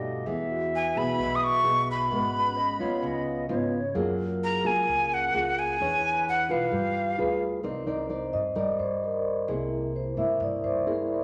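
A breathy, close-miked jazz flute with vibrato carries the melody from 0.8 s over a hollow alto flute second line, ringing soft-mallet vibraphone, thumb-plucked nylon-string guitar and a woody, thumpy pizzicato upright bass in this wistful, smooth bossa nova excerpt at 130 BPM, set in a wet large-studio reverb, before the vibraphone takes a solo from 7.6 s.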